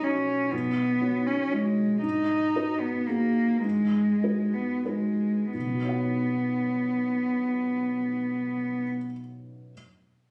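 A dark, bowed cello sits up front, played by one player with a soft attack, sul tasto tone, vibrato and a smooth top end, carrying a second line in its middle register. Beneath it, a felt-muted upright piano plays a mellow accompaniment across a broad range, its thick felt dulling each note while the action noise stays audible. This is hopeful, intimate neoclassical music for piano and strings in 3/4, played with rubato and easing back noticeably early on, with the harmony moving from Badd9 to G#m7 and back to Badd9 at 5.5 seconds. The cello stops at 8.8 seconds, leaving the soft piano alone until the fragment ends at 9.7 seconds. The sound is close and private, caught on a phone in the room with light studio reverb and compression, and it breaks off as part of a longer piece.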